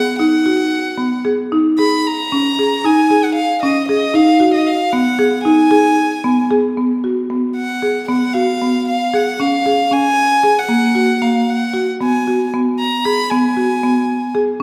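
Set in an uneven 5/8 with straight eighths at 229 BPM, this contemporary chamber piece feels urgent and restless, cut from a longer work and tuned to A4 = 442 Hz in G# dorian. A buzzing marimba with medium mallets plays arpeggios throughout, its woody hardwood bars sounding dry and up front. Above it, a single violin carries the melody in a rich, intimate voice, played sul tasto with an airy bow, a soft attack and light vibrato, close and up front. The harmony first moves through B, C#sus2 and G#m, then shifts at 6.8 seconds into a second section built on G#m7, C# and F# before returning to G#m7. The violin falls away at 14.3 seconds, just before the marimba ends, and both sit in the wet reverb of a recital hall.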